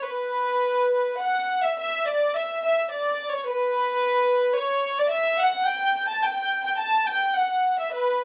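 A chamber violin section plays alone from the start, its bowed, gut-string tone reedy and sweetened by light vibrato in a period style, sitting up front and close in a wet studio reverb. The music is Mexican folk in triple metre, moving with a free, rubato feel and a proud, romantic mood, settling into a new passage at 1.8 seconds that carries on until the cut at 8.2 seconds, as this brief fragment is taken from a longer piece.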